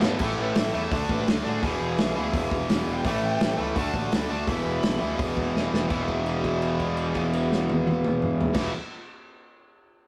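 A straight 4/4 pulse at 168 BPM drives this upbeat, energetic punk rock excerpt in E mixolydian, kicked off by a drum fill on a loose indie kit that sits up front with a tight kick, medium-tuned snare and rolled-off top across crash, hi-hat and toms. Two picked guitar riffs fill the sound, one overdriven and forward, the other distorted, compressed and scooped further back, over a punchy fuzz bass, while a bright overdriven lead melody runs from 0.4 to 5.2 seconds above an A, D, E progression. After a second drum fill, a held note sustains from 5.9 seconds, all captured as a rough rehearsal-room recording with light reverb.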